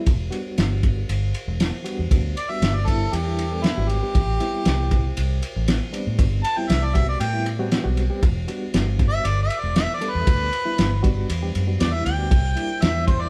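A straight-eighth 4/4 groove at 118 BPM drives this brooding, soulful E minor soul blues, where a thuddy, cloth-damped drum kit with a fat snare and dark cymbals and a round, foam-muted fingered bass sit up front beneath a reedy electric piano shimmering with fast tremolo, while a clear, close-miked harmonica enters at 2.4 seconds for a jazz-style solo of scooped notes and light vibrato, roughened by overdrive and analog delay, as the chords move from Em7 to Am7 and back before closing on C7 in a lightly reverberant, live-room sound.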